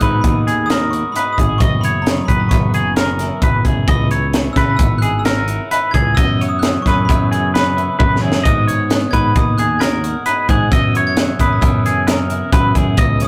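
From the first beat, a crisp, up-front fusion drum kit with a high-tuned snare and tight kick drives this intricate, wistful math rock and Midwest emo passage at 132 BPM in 5/4, alongside a clean, twangy electric guitar playing tremolo-tinged arpeggios and a punchy, growly picked bass. Behind them, a compressed twelve-string electric guitar supplies accompaniment through spring reverb, while a glockenspiel struck with brass mallets carries a dark, bell-like melody over chords moving between G#m7, F#7sus4 and C#m7. A short drum fill at 8.0 seconds punctuates the rough rehearsal-room sound of this fragment from a longer piece.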